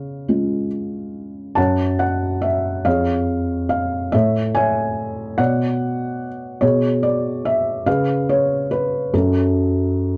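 Classical solo piano in a lyrical, wistful vein, this brief passage cut from a longer piece moves at a slow 47 beats per minute in 6/8 with a free, rubato feel. A felt-muted upright piano carries everything alone across the full 10.2 seconds, its thick felt giving a soft, mellow, intimate tone with short sustain and the audible clatter of the action close at hand. The harmony drifts in a melancholic arc through C#, F#5, A and a pair of colored B minor chords before settling on F# minor at 9.1 seconds. The playing sits up front in a dark production, bathed in a moist studio reverb whose brief half-second tail keeps the hushed, private mood intact.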